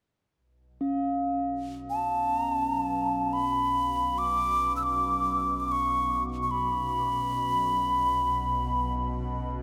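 In free time, this spacious, haunting excerpt of meditative world music in B minor opens with a ringing bronze singing bowl struck with a wooden striker at 0.8 seconds, its slow beating shimmering alongside an ethereal, detuned pad drone on B1 with chorus and phaser that arrives at 1.2 seconds, before a breathy, close-miked alto ocarina enters up front at 1.9 seconds with a straight-toned, clay-voiced melody between A5 and E6 trailed by delay, all bathed in a cathedral reverb.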